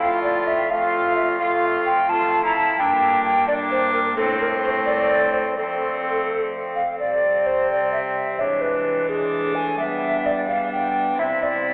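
A classical, renaissance-style consort dance in a straight 6/8 at 86 BPM, solemn and rustic in mood and cut from a longer piece, with a hollow, airy tenor recorder carrying the melody up front over a rich, gut-strung viola second line, a clear, distant trombone accompaniment and a dark, nasal cello bass. The recorder's tongued notes show a woody chiff and vibrato, while the bowed viola and cello, each a single player in period style, have a reedy edge. A cavernous cathedral reverb sets the whole consort far back in the room with a thin, telephone-like sound, and the harmony moves from F through Gm and Am before turning toward C by way of E7 and G in the second section at 7.0 seconds.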